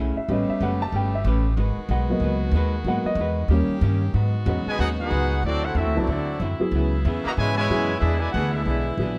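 Recorded close and detailed with light reverb, this sultry, brassy excerpt of swinging jazz in G# minor at 186 BPM opens with a mellow, dark baby grand piano solo over a woody, thumpy pizzicato upright bass, a clean hollow-body archtop guitar and tight, clear sustained saxophone chords. The solo ends at 4.2 seconds, and at 4.7 seconds a smooth-topped trumpet section with plate reverb takes the melody up front while a brilliant trombone section with light vibrato adds a second line in the background.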